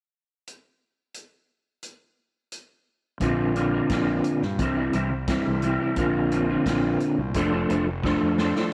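Psychedelic rock at 87 BPM in a straight 4/4, this short excerpt cut from a longer piece feels hazy and kaleidoscopic. A vintage drum kit opens alone at 0.5 seconds with hi-hat, a punchy kick and a medium-tuned snare, its sound natural and rolled-off on top. At 3.2 seconds a twangy, slightly broken-up electric guitar through a small old amp enters up front with a picked riff colored by rotary speaker, while a growly fuzz bass with overdrive joins underneath. The harmony moves through Bbadd9, C and back to Bbadd9 before settling on F6. A drum fill starting at 8.1 seconds closes the passage, all set in light reverb and small room ambience.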